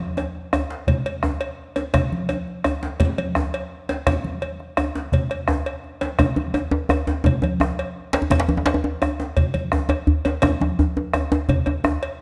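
Driving and earthy, this West African traditional drum ensemble piece, cut from a longer performance, rolls in a straight 12/8 feel with thick-skinned congas played with soft hands, a metallic cowbell, a round, dry bombo, and a deep djembe whose hard-hand strokes carry metal rattles and a band-limited, vintage tone. At 6.2 seconds a second, medium-tuned djembe joins up front, played with soft hands and close, dry presence. Close, detailed microphones capture the drums within a moderate recital-hall reverb.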